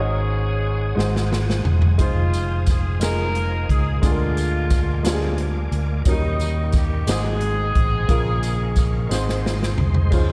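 A slow, jubilant gospel passage in 6/8 at 59 BPM opens with a tight, vintage horn section carrying the melody with light vibrato and slapback and tape echo, over a clear, worn concert grand piano with deep bass, a round, amped fingered electric bass up front, and a clean tonewheel organ with key click and fast rotary speaker holding chords in the background. An airy, polished big-band drum kit with dark cymbals and a punchy kick enters at 1.0 seconds with a fill, and a jingly, saturated tambourine joins at 2.0 seconds. Chords move from Ab7sus4 through Fm7, Bb7/D and Eb7 to Bbm before settling on Ab, with another drum fill at 9.1 seconds under light studio reverb in this uplifting excerpt from a longer piece.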